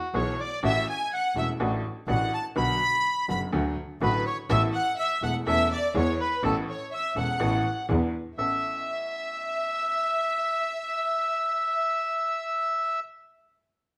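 Set in a wet, large studio reverb, this passionate, elegant tango fragment in A major moves at 124 BPM with a rubato feel. A reedy, vintage bandoneon carries the melody up front, while a bright, woody, slightly detuned upright piano accompanies and a lush, smooth violin section adds a bowed second line with vibrato. A focused, bowed double bass anchors the low end until 8.6 s, just after the music moves into a new section at 8.4 s.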